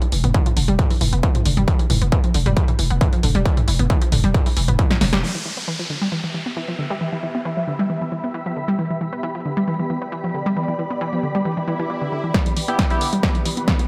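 A distorted, overdriven kick sits up front in this dark, intense peak-time techno excerpt at 135 BPM in E phrygian, driving alongside a punchy analog drum machine with tape-warm snare, hats and toms under gated reverb, a growling, buzzy 808-style bass, and a bright, detuned analog pluck riff that pumps through chorus and delay while a filter sweep rides the opening. At 5.2 seconds the beat drops away, leaving the pluck, an electronic downlifter and swell, and a cloudy, blurred granular pad that enters at 6.3 seconds. The drums return at 12.3 seconds with a fill and build-up, joined by edgy, nasal sync-sweep polysynth stabs and a very quiet, swarming drone in a light-reverb, 1980s-style digital production.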